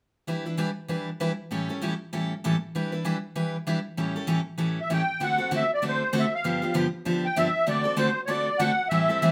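Lightly swung eighth notes drive this brisk 4/4 jazz passage at 195 BPM, cut from a longer piece and set in D mixolydian with a playful, charming air. A picked steel-string acoustic guitar opens the accompaniment at 0.3 seconds, its jumbo body giving a bright, full sound from fresh strings as it moves through Em7 and A7. At 4.8 seconds a musette accordion enters up front with the melody, its reedy, shimmering tone dark and smooth against the bright guitar. The harmony then shifts to D7 and G7 for the second part of the passage, with both instruments carrying on together to 9.3 seconds. A moderate studio reverb gives the pair a sense of room while keeping them close and present.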